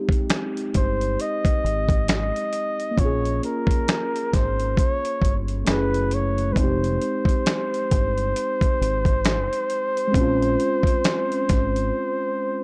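A dry, gritty hardware recording with light reverb frames this melancholic, nostalgic lo-fi hip hop excerpt in F minor at a swung 67 BPM, where muted, felt-like synth keys with chorus and cassette-tape wear carry Fm7, Bbm7 and Gbm7 chords, a compressed sampler-style kit of thumpy kick, snare, hi-hat and finger snaps sits up front, a deep, round dub bass with tube saturation enters at 0.8 seconds alongside a smooth, vibrato-laden jazz flugelhorn solo, and the drums and bass stop at 11.9 seconds for a brief break.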